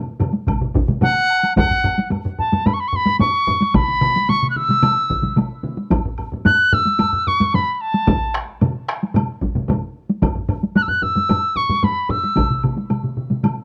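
This ceremonial, driving excerpt of Japanese traditional taiko drumming opens at 0.2 seconds with taiko ensembles and a woody woodblock, with further taiko groups joining by 0.5 seconds, all in a straight 4/4. The drums are struck with hard or heavy sticks. One group sounds close and dry, another sits up front in a small room, and a third carries the air of a live room. At 1.0 seconds a bright wooden piccolo enters, pure and crisp in attack, with vibrato and an unsteady quality. It sits up front as the lead melody, ranging from F#5 to F#6. The whole has the dry, close feel of a 1970s-style studio recording with small room ambience, and it is cut from a longer piece.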